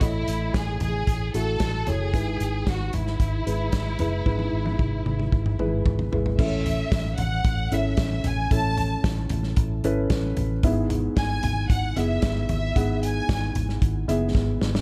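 Piano-driven pop at 113 BPM in 4/4, uplifting and warm, moving between A and E chords in this short excerpt. A felt-muted upright piano gives soft, mellow accompaniment with audible action noise, over a dark, round, foam-muted fingered electric bass and a loose acoustic drum kit with a tight kick, medium-tuned snare and rolled-off top, which plays fills at 4.3 and 14.4 seconds. A lush, distant violin section carries the expressive bowed melody with vibrato until 13.6 seconds, set in a studio ambience.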